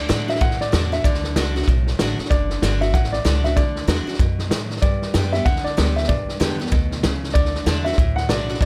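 A vintage drum kit sits up front with a punchy kick, a medium-tuned snare, hi-hat and a rolled-off top, driving this upbeat, rowdy rockabilly fragment with a swung feel from 0.1 seconds. Beneath it, a dark pizzicato upright bass carries the low end while a bright picked steel-string acoustic guitar with fresh strings supplies accompaniment. An intimate upright piano with audible action noise and a woody tone plays a short melody within the narrow span of D5 to F#5, all moving from D to G and back to D at 7.3 seconds under light reverb.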